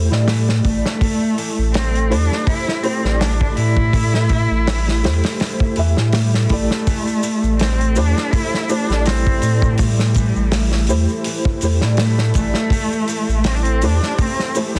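Dark and cinematic, this trip hop excerpt moves at 82 BPM in 4/4 with a lightly swung sixteenth feel in A minor, resting on a single Am7 chord throughout. A deep, round sub bass and a punchy, mid-forward acoustic drum kit of kick, snare and hi-hat sit up front, while a felt-muted upright piano plays soft, boxy accompaniment with audible action noise, tremolo and tape echo. Beneath it, a very quiet, detuned analog pad holds moody sustained chords, and a woody nylon-string guitar with old strings fingerpicks arpeggios in the background, also touched by tape echo. A single distant cello carries the melody from 0.3 seconds, expressive with vibrato and portamento and trailed by tape echo. Compressed, saturated maracas with group handclaps enter in the background at 6.9 seconds, and a tense, bright, string-like drone with its own built-in reverb creeps in very quietly at 8.7 seconds, all within a small room and a dense, heavily limited modern master.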